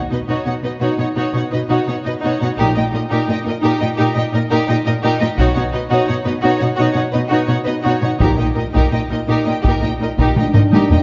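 This adventurous, triumphant orchestral film cue, cut from a longer piece, opens at 0.1 s with lush, bowed violins carrying a smooth, vibrato-rich melody over a second violin line, expressive violas with portamento and a prominent cello bass, soon joined by woody double basses in the background as the harmony alternates between Badd9 and Eb/Bb. At 5.4 s a taiko ensemble enters up front with heavy sticks in a live room. A drum fill and a dark, roomy French horn section arrive at 10.4 s, all bathed in a wet scoring-stage reverb.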